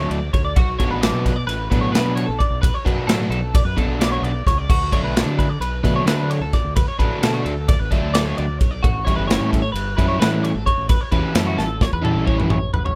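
Math rock with a midwest emo lean, this bright, playful 9/8 clip at 261 BPM pairs a clean, compressed twelve-string electric guitar spinning lush-chorused arpeggios with an up-front, double-tracked crunchy overdriven guitar riff, a growling fingered bass with overdrive, and a punchy, pumping studio drum kit of kick, snare, toms, ride and crash, moving from Bm9 to A13 at 8.8 seconds before a drum fill from 11.6 seconds, all in a dry, rough home-demo mix.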